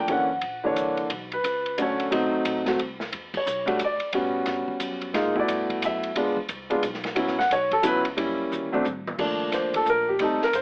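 A warm concert grand piano sits up front carrying the melody over a woody pizzicato upright bass in the background, joined by a dark, smooth jazz kit with dark-toned cymbals, ride, hi-hat, crash, a boomy kick, medium-tuned snare and toms, all played as a cool, smoky swinging jazz waltz through light reverb and an AM-radio tone, with a full-band accent at 3.3 seconds and a drum fill at 8.5 seconds that hands off to a brief piano solo at 9.2 seconds in this cut from a longer piece.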